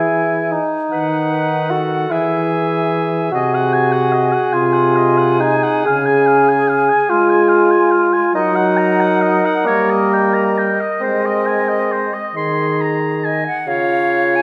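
A classical wind quintet excerpt, this slow romantic movement in 6/8 unfolds with a lyrical, warm mood and an elastic rubato feel. The silver concert flute carries the melody with an airy, metallic tone, soft attacks and vibrato, while the oboe's distant, punchy voice traces a second line. The clarinet offers bright accompaniment from the background until it drops out at 13.3 s, and the clear French horn, placed up front with light vibrato, fills in the middle of the texture. Anchoring the ensemble, the mellow bassoon sounds the bass line with a roomy quality, standing out as the most prominent voice. The harmony drifts from an opening in E toward a settled Db major, and the whole passage sits in a moderate concert hall reverb before the fragment ends at 14.4 s.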